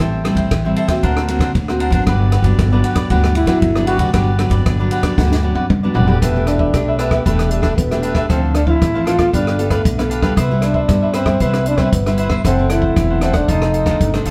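A warm, vintage-toned trombone with soft attack and vibrato enters at 3.4 s to take a jazz-style solo over a sunny, lively samba-choro excerpt in G major at 116 BPM, where a crisp picked cavaquinho and a full-bodied fingerpicked nylon-string guitar with audible finger squeak weave the accompaniment, a woody, thumpy gut-string upright bass plays pizzicato, and a dry, up-front compact cocktail kit with dark cymbals, a high-tuned snare and a tight kick adds a fill from 5.2 to 6.2 s, all set in a wet studio reverb.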